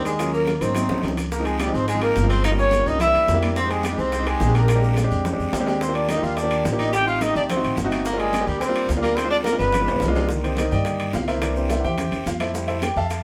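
A dark, breathy trumpet carries the melody with vibrato and scooped notes, sounding distant and whispered, while a bright, punchy tenor saxophone plays a second line beneath it in this fiery, driving Afro-Cuban jazz in C minor at 214 BPM. A polished concert grand piano with deep bass and audible action noise comps up front beside a woody pizzicato upright bass, as ringing high-tuned congas, metal-shell timbales, tight bongos, a raspy guiro and grainy maracas sit in the background of a lively studio room. Both horns stop at 10.1 s, and the piano takes a solo from 10.3 s to the end of this excerpt, which is cut from a longer piece.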